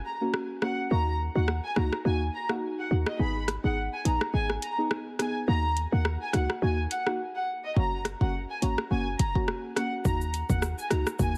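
Sultry and bouncy, this short excerpt from a longer dancehall piece moves at 105 BPM in 4/4 with a light swing on the sixteenths, set in Eb minor. A dark studio violin section carries the melody from the start, its nasal, reedy gut-string tone bowed in a period style and touched with delay, sounding both distant and up front. Beneath it, a deep, mellow chord stab supplies the accompaniment, its wave-folded tone shaped by a filter sweep and a moving notch, with a fast attack, a decaying tail and chorus. An electronic afro-pop drum kit, overdriven and up front, brings a deep kick, metallic hi-hats, rim clicks and shaker, and a short, punchy 808-style bass with a tight, sine-based body and a noise layer joins at 0.9 seconds. The chords cycle through Gb, Ebm and Abm, all within light digital ambience and a heavily compressed, radio-like sound.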